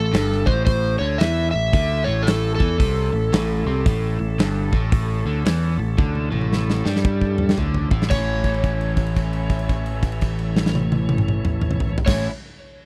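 A raunchy, driving swung blues rock and southern rock passage opens with a warm, overdriven slide guitar carrying the melody over a double-tracked, scooped electric guitar riff, a bright, growling overdriven bass placed up front, and a very quiet, thick tonewheel organ sustaining gritty chords through a slow rotary speaker with audible key click, as a huge acoustic arena drum kit with a punchy kick and bright cymbals joins a moment later, plays a fill from 6.0 to 8.1 seconds and then backs a held note from 8.1 seconds, in a dry, close 1970s-style studio sound with small room ambience.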